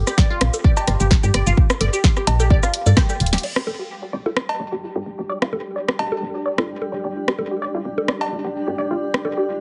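Minimal techno at 129 BPM with a cool, hypnotic pull, cut from a longer piece: a woody FM bass and a squelchy, resonant blip pluck run throughout, the pluck colored by phaser, lush chorus, cassette tape and digital delay and carrying a filter sweep from 3.4 s, while overdriven rim click, bongos and cowbell with dub echo sit up front, a punchy kick and house kit with bright hats drive the opening until a band accent at 3.0 s and a drum fill at 3.2 s, after which a flickering grainy texture and a blurred granular cloud pad drift in under a heavily compressed, radio-like sound in a small room.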